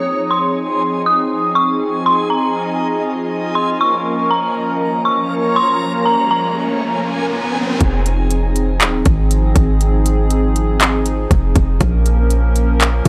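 Atmospheric cloud-rap hip hop in F minor, this melancholic, spacious clip moves at 120 BPM with a half-time feel, drifting between Fm7 and Bbm. It opens on an eerie, inharmonic FM synth bell carrying the melody, its mellow tone thickened by chorus and trailed by tape echo until 6.8 seconds. Beneath it, a hollow, flute-like pad holds soft sustained chords through the whole clip, detuned and chorused with a sidechain pumping motion, while a reversed, dreamy granular texture glimmers brightly in its own reverb. An electronic riser enters at 5.4 seconds, leading into the second section at 7.8 seconds, where a deep, boomy 808-style bass with a noise layer and a trap kit of hard-clipped kick, crisp hi-hats and handclaps arrive up front. The mix is dry and gritty, with transformer saturation lending a hardware edge to the sound.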